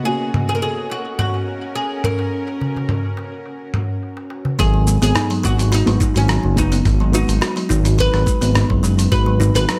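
This earthy organic downtempo excerpt opens on a dark, felt-muted upright piano with analog delay and a tense, nasal bowed-like drone, both pumping to the sidechain, as a bright, plectrum-plucked oud melody with tape echo, a hard-handed clay darbuka with analog delay and a gritty, dusty soul sampler-style kit of hi-hat, rim click, shaker and toms join in an echo-heavy small-room mix; at 4.6 s the drone and darbuka fall away while ringing, hollow kalimba arpeggios, a smooth, up-front gliding synth bass with sidechain pumping and a thumpy electronic kick arrive, and the piano drops out at 7.3 s.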